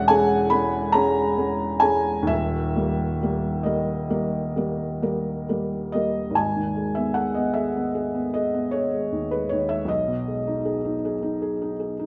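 A rubato 9/8 pulse at 42-54 BPM in dotted quarters drifts through this yearning, mournful romantic nocturne in G# minor, cut from a longer piece, where a solo felt-muted upright piano, soft, mellow and intimate and placed up front, spans D#1 to B5 over chords moving from C#m/E to D# and then, from 6.4 seconds, to G#m and G#m/B, heard in a moderate recital hall reverb lasting 1.4 seconds.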